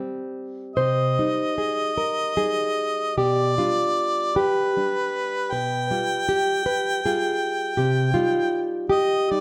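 A moderate recital-hall reverb surrounds this elegiac, melancholic romantic duo in C minor, a short cut from a longer piece moving in a slow, rubato 6/8 at about 46-55 BPM. The full-bodied nylon-string guitar opens alone at 0.0 s, fingerpicked in a classical manner with audible finger squeak. At 0.8 s the bright harmonica takes the solo melody with light vibrato, both instruments up front, over a simple progression of Cm, G/B and G7/B returning to Cm.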